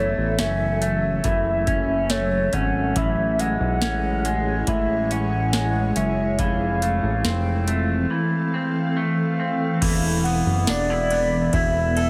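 Dream pop with a dreamy, ethereal mood, cut from a longer piece, where a warbling, nostalgic lead carries the melody with chorus, tremolo and delay over an airy pad of sustained chords treated with ensemble chorus, reverb and phaser. A bright, slightly broken-up guitar through a small old amp picks twangy arpeggios, while a fat, detuned sawtooth bass sits up front and a booming analog drum machine with a deep kick, tonal snare and metallic hats, overdriven, enters at 0.4 seconds. A delicate, bell-like celesta joins very quietly at 3.0 seconds, and the whole mix has a heavily compressed radio sound with light digital ambience as the chords move from F#m7 through Amaj7 and Fmaj7 to Esus4.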